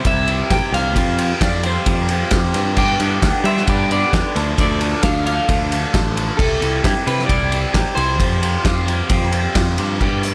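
Jangly and carefree, this short indie rock passage, cut from a longer piece, moves in a straight 4/4 over a chord cycle of C, Fsus2, G and Dm. A dark, slightly broken-up electric guitar through a small old amp carries the picked melody, touched with subtle chorus and analog delay. Beneath it, two overdriven guitars play riffs: a raw, bright garage guitar coloured by phaser, and a biting, warmer one set in the background with lush chorus. An up-front acoustic drum kit sounds loose in a small, pumping room, with a medium-tuned snare, tight kick, hi-hat, crash and ride, while a punchy, growly picked electric bass enters at 0.1 s. From 2.8 s to 9.5 s a very quiet FM synth chime adds a ringing, inharmonic second line with a fast attack and long release, all in a dry mix with little reverb.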